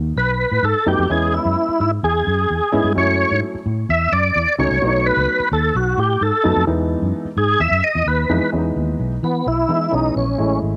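Uptempo 1960s-style soul with a joyful, warm mood, cut from a longer piece, where a full, lightly overdriven tonewheel organ with chorus vibrato and slow rotary speaker takes an up-front solo over chords moving from B7 through F#m7 to Emaj7 until 8.5 seconds. Underneath sits a round, foam-muted vintage electric bass, amped and up front, while a dark upright piano enters at 0.9 seconds with a woody, slightly detuned, intimate character and audible action noise. Light reverb and small room ambience frame the parts as the music moves into a new section at 8.5 seconds.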